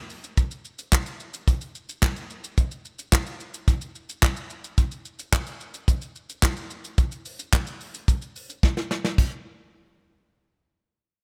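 This pop excerpt moves at a straight 109 BPM in 4/4 with a confident yet bittersweet mood, carried by a soft brush drum kit that plays from 0.1 to 9.3 seconds. The acoustic kit sits up front in a small, dry room, with a punchy kick, a medium-tuned snare played with brushes, hi-hat, shaker, handclaps and crash cymbal. A drum fill from 8.6 to 9.2 seconds closes the opening section just as the next section begins.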